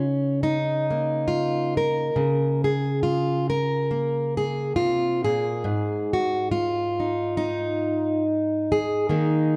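A slow 69 BPM pulse in 4/4, with a gentle swing on the eighth notes, carries this brief, nostalgic folk fragment of solo fingerstyle playing. A fingerpicked, plugged-in steel-string acoustic guitar sits up front with a concert-hall presence, ranging from Ab2 to Bb4 as it moves from Bbm/Db to Bbm9 at 2.1 seconds and settles on Ab5 at 5.6 seconds. The dark, warm production wraps the guitar in a moderate scoring-stage reverb with a lingering tail.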